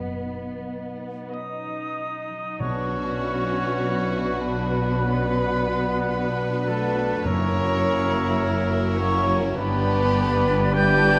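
A rubato 4/4 pulse at 42-54 BPM carries this serene, warm slow romantic movement in B minor for symphony orchestra, where very quiet horn chords, ringing harp arpeggios and distant bowed cellos and double basses open alone before rich, vibrato violins take the melody at 1.3 seconds over smooth violas, with a second violin section, a pure silver flute and bright clarinet adding second lines; a warm oboe, mellow bassoon, clear trumpet stabs and articulate hard-mallet timpani join at 2.6 seconds, the timpani stopping at 9.0 seconds, all in a wet concert hall reverb as the chords move through B, Bm, F#7 and G.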